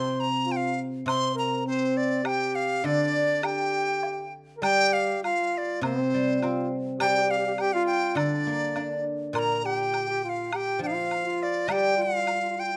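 This excerpt from a longer piece opens with a Chinese chamber ensemble in the Chinese traditional style, as a breathy, bright dizi carries the melody from C5 to C6 over a mellow flugelhorn second line and a guzheng accompaniment, all three sounding from the very start. The mood is wistful and graceful, set in G yu mode at 102 BPM in 2/4, yet the feel stays rubato. The dizi sits up front and close-miked, its bamboo tone buzzing from the membrane with a crisp, chiffy attack and a straight, expressive line. Beneath it, the flugelhorn adds a classical-style voice with vibrato, while the guzheng, played with fingerpicks, rings with a silvery, up-front shimmer in the low register. A woodblock enters at 1.1 seconds and stays in the background, close and dry, and the music moves into a second section at 4.6 seconds under light reverb and close, detailed microphones.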